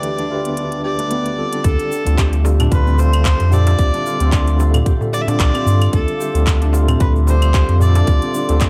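A deep, round sub bass with tube saturation and sidechain pumping arrives with a tight electronic kick at 1.6 seconds under a clear, biting bowed kamancheh melody with light vibrato and portamento, a barky, overdriven tine electric piano with fast tremolo, ringing fingerpicked Celtic harp arpeggios opening with a filter sweep, a warbling lo-fi pad in the background, crisp organic electronic hi-hat, shaker, claves and handclaps, and a very quiet close darbuka, all forming a meditative, hypnotic organic downtempo excerpt at 112 BPM in D dorian with a swung 16th feel and a dark, dry production.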